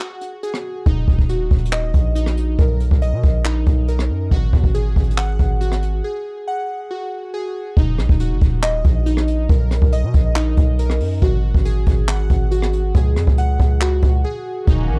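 Glassy digital keys trace chorused, tape-echoed arpeggios over a dark, boomy jazz brush kit of handclaps, hi-hat, kick and rim click, opening a brooding, menacing half-time trap beat at 139 BPM in Eb minor. A distorted, saturated 808-style bass enters up front at 0.9 seconds, heavy and aggressive beneath chords moving from Ebm through Bmaj7 to a closing Dbsus4. Bowed symphonic strings with vibrato appear only at 14.7 seconds, just before this dry, gritty hardware recording cuts off.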